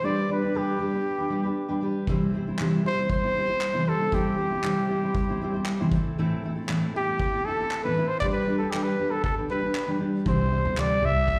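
Heard as a live gig through the venue's PA, with moderate club reverb and a recital-hall air, this carefree, easy-going acoustic pop clip moves at 117 BPM in C major, cut from a longer piece. An up-front, close-miked trumpet with light vibrato carries the solo melody in pop style over a dark, full-bodied jumbo steel-string guitar that is fingerpicked, both touched with slapback echo, while a loose indie kit of handclaps and a punchy kick joins at 2.1 seconds in a small, pumping room. A woody pizzicato upright bass enters at 10.3 seconds as the chords return to C after passing through A minor and G.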